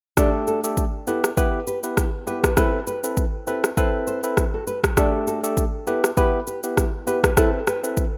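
Afrobeats at 100 BPM with a lightly swung sixteenth feel, breezy and romantic, cycling through Dsus4, Em and Amadd9 in this short section cut from a longer piece. An electronic afro-pop kit sits up front with a deep kick, rim click and shaker, beside a bright, barky tine electric piano played clean through a combo amp. A dark, woody nylon-string guitar with old strings, thumb-plucked, carries the riff through tape echo, all within a moderate plate reverb and a rough home-demo mix.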